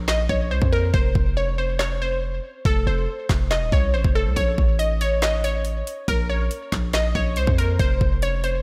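A half-time 4/4 trap groove sets a menacing, hard-hitting hip hop mood, with an electronic kit of knocking kick, woody snare, metallic hi-hats and handclaps beneath a punchy, heavy 808-style bass with a noise layer up front, while a crystalline, detuned wavetable pluck carries the melody with chorus, tape echo and a filter sweep over Bbm and F5 chords, the opening break running to 4.4 seconds in a lightly reverberant room.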